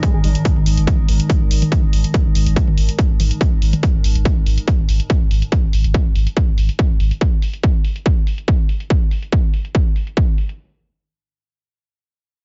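Heavily compressed and dry with a dull, radio-like top end, this dark, relentless cut from driving peak-time techno rides on an overdriven, up-front kick and a layered, overdriven kit of hi-hats and toms under a filter sweep on the drums, while a deep, thick sine sub bass pumps through a tube-saturated haze until 7.1 s, an eerie, warbling metallic FM drone sounds only until 3.9 s, and a barely audible downlifter passes in the opening half second.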